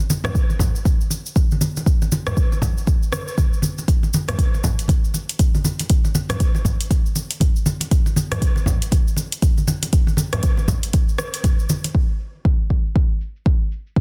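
Earthy and spiritual, this house groove cut from a longer piece moves at 119 BPM in 4/4 with a 60% swing on the 16ths. Soft-handed, low-tuned congas with a thick-skinned acoustic tone come in at 0.1 seconds and play until 11.9 seconds, and a deep, tape-warm electronic kick joins them up front from 0.3 seconds. An electronic afro-pop kit adds cabasa, metallic hi-hats and rim clicks, low-pass filtered and re-recorded in a large room, all within a digital ambience and a dense, heavily limited modern master.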